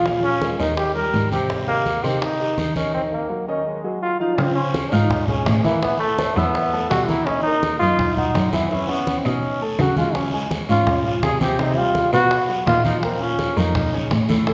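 A bright, vintage-toned trombone sits up front in this sunny, lively Afro-Cuban jazz cut, taken from a longer piece and moving at a brisk 166 BPM in straight 4/4. It carries the melody as a jazz-style solo with light vibrato, while a natural-sounding grand piano supplies the accompaniment across a broad register. A single bowed cello takes the bass role, its reedy, gut-string tone giving the low end a period flavour, with light vibrato of its own. Low-tuned congas with a thick skin and soft hands sit close and dry. Tight, high-tuned bongos stay in the background, and a raspy guiro rings from a distance in a large room. The recording has the long, wet reverb of a church or concert hall, the harmony shifts into a new section at 4.4 seconds, and a percussion fill arrives at 8.7 seconds.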